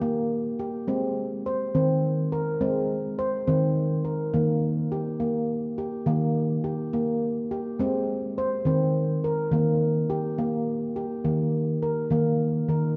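A dark, warm production sets a solo handpan up front inside a wet church reverb whose three-second tail lets every note ring into the space. This is meditative world music in 6/8 with a straight feel, calm and dreamy in mood. The nitrided steel instrument sounds smooth and meditative, its sharp finger strokes giving each tone a clear edge before it blooms. Across the opening section, from 0.0 to 11.3 seconds, the handpan moves between two chords within a range from Eb3 to C5. At 11.3 seconds a brief second section settles on a single high Eb5 before this short cut from a longer piece ends at 13.0 seconds.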